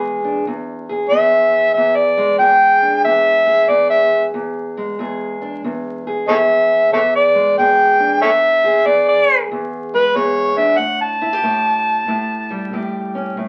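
Swung eighths in four give this soulful, swaggering blues fragment its gait, as a dark, boxy fingerpicked parlour acoustic guitar accompanies from the start and an up-front, gritty, overdriven amplified harmonica enters at 1.1 seconds with a jazz-style solo full of vibrato, tongue slaps and scooped notes, moving from E to an A7 chord at 10.8 seconds, all heard through studio reverb and the crackle of a very old 78 rpm record.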